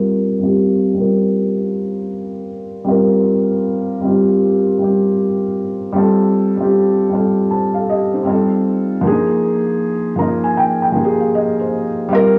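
A felt-muted upright piano plays alone and up front, its thick felt giving a soft, dark, intimate tone softened further by cassette tape and a low-pass filter, with a filter sweep running across it from 0.0 to 12.1 seconds. This reflective, melancholic hip hop fragment has a swung 4/4 feel, moving through C7sus4, Fadd9 and Bb7sus4 before the piano closes with a fill from 9.8 seconds. Light reverb and a small room lend the cassette-tinged sound a close, natural setting.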